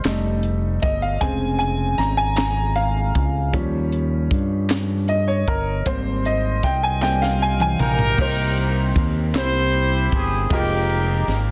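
A clear, slightly worn grand piano takes the lead over a bright, up-front fingered electric bass, an airy fusion drum kit with a high-tuned snare and punchy kick, and crisp group handclaps in the background in this jubilant, hopeful slow gospel piece in 6/8 at 52 BPM in Ab major, moving through lush chords such as Bbm9/F, Eb9 and Abmaj7; a drum fill at 7.0 seconds leads into the entrance of a roomy horn section with light vibrato at 7.8 seconds that carries the melody over Cm7, C7 and Fm11, all under light reverb and a dense, heavily limited modern master.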